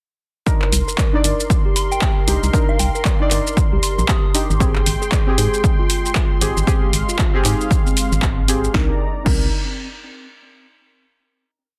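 An overdriven, punchy electronic kick drives four-on-the-floor at the front of this deep, late-night deep house piece, joined by a tape-warm analog drum machine's snare, claps, hats, shaker and crash, a hollow organ-like FM bass riff entering at 0.7 seconds, pumping detuned pad chords with 12-bit grit, warbling syncopated chord stabs with chorus and delay, a mellow tine electric piano riff in the background, and a pure FM bell adding short answering phrases between 1.8 and 4.7 seconds, all moving from Cm9 to Abmaj7 before a final Cm9 chord at 8.7 seconds in a dense, heavily limited master.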